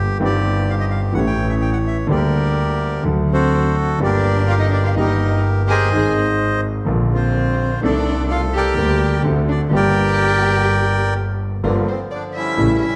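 A reedy, up-front bandoneon carries the melody in this melancholic, passionate tango excerpt in G minor at 126 BPM with a rubato feel, over a clear, deep-bassed vintage concert grand piano and a biting, bowed double bass with intense vibrato, while a rich, expressive violin enters at 3.3 seconds with portamento on a second line, all resonating in the reverberant acoustics of a recital hall.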